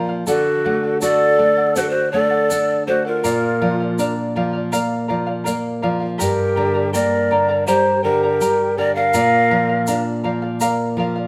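Heard through close, detailed microphones in a moderate recital hall reverb, this melancholic yet festive Andean folk excerpt at 81 BPM in 4/4 opens on a fingerpicked nylon-string guitar with bright fresh strings and finger squeak, alongside a shimmering double-strung charango, before breathy cane pan pipes enter at 0.3 s to carry the mellow, vibrato-rich tongued melody with audible chiff, joined by a warm, expressive wooden quena on a soft-attacked second line and a grainy, vintage-toned egg shaker, all moving over D, Bb, Gm and Bb chords until the pipes and quena fall away at 10.0 s.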